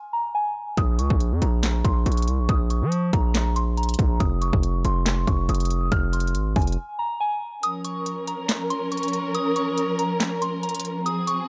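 Dark and eerie, this half-time trap excerpt at 140 BPM in Bb minor opens with a soft, pure FM synth bell carrying a mellow, chorused and phased melody under a filter sweep, joined at 0.8 seconds by a crisp, hard-hitting drum kit and a saturated, aggressive 808-style bass that drops out at 6.8 seconds, before lush, bowed dark strings with vibrato enter with sustained chords at 7.6 seconds while the kick falls silent, all in a dry, up-front mix.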